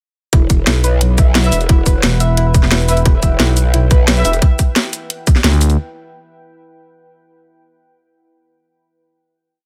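A growling, saturated bass with a formant-filtered wobble leads this dark, futuristic drum and bass piece in E minor at 176 BPM, its modulated phrases shifting wobble speed up front. A tight, overdriven electronic kick and a layered kit of cracking snare, bright hats and shaker drive a broken-beat, technical groove through a single drop that runs from 0.3 seconds to the end. A thick FM bass cuts in with chopped phrases, first at 2.0 seconds and again near the close. In the background, a soft, round pluck cycles a 6-step arpeggio that drifts against the bar through lush chorus and delay, while a deep, moody sawtooth pad with a sub octave holds slow-attack chords. Distant, roomy brass stabs in a power voicing echo sparsely, and the mix sits in a digital ambience.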